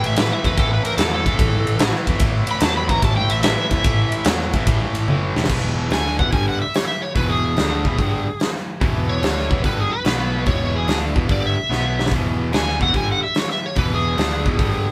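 A raunchy, swaggering blues rock and southern rock power trio kicks off at 146 BPM with a swung feel, an overdriven slide guitar soloing over a double-tracked, cranked stack guitar riff, a growly picked bass, and a big rock kit with bright cymbals and a punchy kick. A drum fill at 5.1 seconds leads into a new section at 5.5 seconds, where the slide melody and stack riff carry on over chords centred on E with turns to B5, and another fill arrives at 11.7 seconds. The band plays live in one room with moderate studio ambience, the drums and riff guitar up front, in a clip cut from a longer piece.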